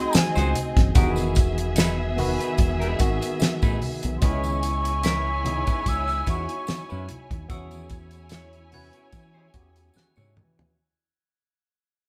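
Lush 1970s-style soul in E major, this warm, smooth excerpt moves at an unhurried 73 BPM in 4/4 with a gentle sixteenth-note swing, while the chords drift from G#7 through Emaj7 and C#m7 to E6 and the whole passage fades. A breathy, mellow jazz flute carries the melody with vibrato and tongued notes from a distant, hollow position until 7.1 seconds, joined by a dark, woody string section bowing a lush second line. Beneath them a worn, slightly out-of-tune tine electric piano plays clean accompaniment through its built-in speakers, and a semi-hollow electric guitar picks a clean riff. The rhythm section is anchored by a round, punchy fingered bass and an up-front 70s drum kit with a fat snare, tight kick and rolled-off top, which plays a fill at 10.0 seconds, while very quiet low-tuned congas and a jingly tambourine sit softly behind. From 5.0 seconds a bright, sparkling glockenspiel with hard plastic mallets rings in the background, all captured as a band playing live in one room with moderate studio reverb.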